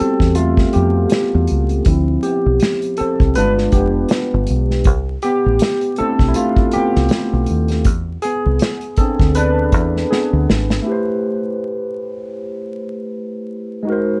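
A bright, barky tine electric piano and a round, foam-muted deep dub fingered bass open this introspective, soulful R&B and neo-soul piece in A minor at 80 BPM, the piano soloing through lush chorus and plate reverb over Fmaj9, Dm9, G7b9, C69 and E7. An acoustic drum kit played with bundle sticks enters a moment later, its punchy kick, medium-tuned snare and hi-hat sitting up front with a gentle 16th-note swing. A drum fill leads to 10.9 s, when the bass and drums have dropped out and the piano carries on alone over Am7 until 14.2 s, all wrapped in a dark production with moderate studio ambience and vinyl crackle.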